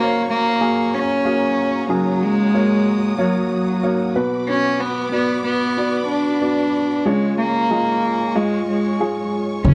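A hopeful, anthemic pop passage with a light swing opens on a pure, floating bowed cello melody played sul tasto, set over polished, present baby grand piano accompaniment and a lush, vibrato-rich string section far in the background, all captured in a dry, close 1970s-style studio sound until a woody, dark pizzicato upright bass note lands up front at 9.6 seconds as this cut from a longer piece ends.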